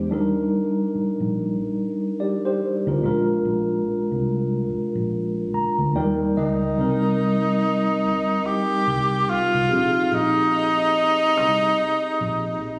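R&B and neo-soul groove with a smooth, relaxed swing, built on a mellow tine electric piano sitting up front with a fill from 5.1 to 6.8 seconds, a dark, foam-muted fingered electric bass underneath, and a clear tenor saxophone with vibrato and a soft attack entering at 6.4 seconds for a jazz-style solo, all in a studio reverb captured on a phone in the room.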